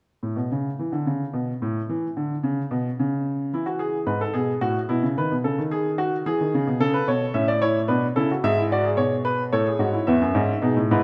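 Stately and joyful, this short excerpt from a baroque-style three-part fugue for solo baby grand piano moves at 110 BPM in 3/4 with a straight feel, ranging from E2 to E5. The piano sounds warm and open, with long sustain and an up-front presence, set in a moderate recital hall reverb. After an opening that sits outside any defined chord, the harmony settles on E at 3.5 seconds and passes through A, Bm7 and E7/G# before landing back on E at 10.1 seconds.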